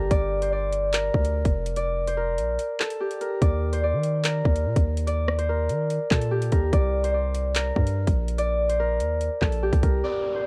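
A fingerpicked Celtic harp rings out up front with a cold, ominous melody over Gm, Eb5 and Csus2 in this drill excerpt at 145 BPM in a half-time 4/4 feel, tuned to A4 = 439 Hz. Beneath it, a deep, mellow sine 808 bass with a fast attack and long decay sits up front alongside an electronic drill kit of hard-clipped kick, metallic hi-hats, handclaps and rim clicks, with the kick dropping out from 2.6 to 3.4 seconds. The dry mix carries a worn, warbling cassette-tape pitch drift, and an electronic downlifter closes the clip at 10.0 seconds.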